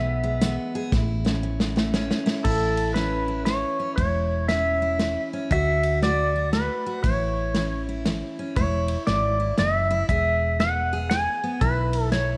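Honky-tonk and classic country in a swung waltz time, down-home and heartfelt, cut from a longer piece. An up-front, twangy pedal steel guitar carries the melody with fingerpicked slide lines and volume swells, taking a solo through the first 2.4 seconds while the natural country drum kit, entering at 0.4 seconds with a punchy kick, plays a fill beneath it. A bright, full-bodied picked acoustic guitar and a growly, woody fretless electric bass fill out the accompaniment under light studio reverb.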